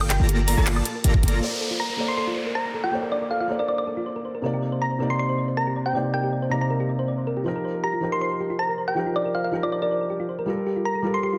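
A round, tine-like synth pluck carries the melody up front through this dreamy, lush future bass fragment in a half-time feel, with its chorus, sidechain pumping and dub echo, while a second gentle pluck with a moving notch spins arpeggios beneath it. The opening drop is dense: a huge, thick, detuned supersaw riff with a low-pass filter and dub echo, a deep, boomy 808-style bass, a trap kit with bright hats, handclaps, woodblock and crash, a knocking electronic kick, and a soft, dark, airy lead drifting in the background. At 1.4 s the drop gives way, and a felt-muted upright piano steps in with intimate, mellow accompaniment that pumps with the sidechain. An electronic downlifter falls through the first few seconds of this new section, and a filter sweep moves over the arpeggio pluck until the fragment ends at 11.4 s. Lush extended chords drift beneath the plucks, in a dense, heavily limited mix with moderate digital room reverb.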